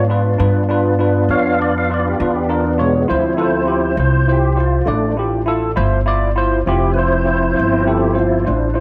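A tonewheel organ carries the solo from the first moment of this brooding, soulful slow blues, holding sustained chords in a clear tone colored by chorus vibrato, key click and a slow rotary speaker. Beneath it, a barky tine electric piano plays accompaniment through a combo amp, bright and clean with analog chorus. A pizzicato upright bass on gut strings supplies a woody, thumpy, dark foundation. The music moves at 67 BPM in 12/8 with a straight feel in D minor, and the harmony shifts from G#dim7 to Dm7 at 3.1 seconds. All three parts sit up front under a moderate plate reverb with a 3.4-second decay, and the fragment, cut from a longer performance, runs 8.8 seconds.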